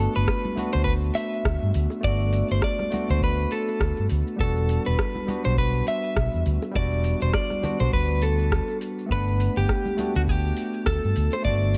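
A fretless electric bass sits up front in this blissful, smooth sunset chillout passage, its amped, warm tone carrying the low end through chorus. It is cut from a longer piece and runs 11.8 seconds at 102 BPM in 4/4 with a gentle 16th-note swing, in G major. A clean, picked electric guitar takes the melody, compressed and up front, with digital delay and a shimmer reverb. A bright, barky tine electric piano plays accompaniment through a combo amp, lightly overdriven and washed in the same delay and shimmer. The rhythm comes from a deep house kit with metallic hi-hats, rim clicks and shaker, a deep, dry analog-style kick with overdrive, and ringing congas and bongos sitting dry in the background. The harmony moves from Gmaj9 to Em9 at 4.4 seconds and returns to Gmaj9 at 9.1 seconds, all set in a light room reverb.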